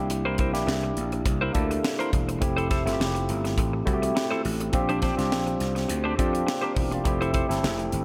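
Glossy and upbeat, this short passage from a longer piece is polished 1980s jazz-funk pop with a lightly swung sixteenth-note feel in 4/4. A barky tine electric piano sits up front through a combo amp, lightly overdriven with a subtle chorus, carrying the accompaniment through the chords C7, Fmaj7, Bb69 and back to Fmaj7. Beneath it, a gritty slap bass brings a growly, punchy, overdriven tone that sounds direct and amped. A clean, compressed semi-hollow electric guitar, fingered and touched with analog chorus, plays a riff from 0.1 to 7.8 seconds. The crisp fusion drum kit is airy and up front, with a high-tuned snare, tight kick and hi-hat, all set in moderate plate reverb within a bright 1980s-style digital production.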